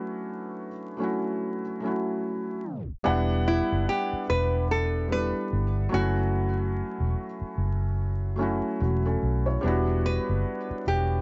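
Vinyl crackle, light reverb and a dulled, muffled top end frame this nostalgic, reflective lo-fi hip hop passage, cut from a longer piece and swung on the sixteenths. A soft, thick-felt upright piano with a cassette-tape tint plays chords of F#m7 and Em9 alone until a tape stop at 2.6 seconds. Then a dark, round, punchy foam-muted electric bass enters at 3.1 seconds, and a small, warm fingerpicked nylon-string guitar carries the melody from 3.5 seconds, all three parts sitting up front.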